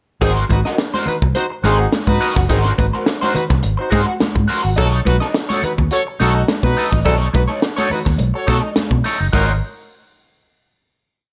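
A punchy horn section with vibrato plays short riffs up front in this energetic funk piece at 105 BPM in Ab mixolydian, moving from Ab9 to B9 before landing on a final Ab9 chord at 9.3 seconds. A crisp fusion kit with a high-tuned snare and tight kick drives a syncopated groove with ghost notes, while a dark, round fingered bass anchors the downbeat with muted ghost notes. A slightly broken-up, twangy guitar scratches out sixteenth-note rhythm through a wah pedal, and thick-skinned congas played with soft hands sit in the background, all under a light studio reverb.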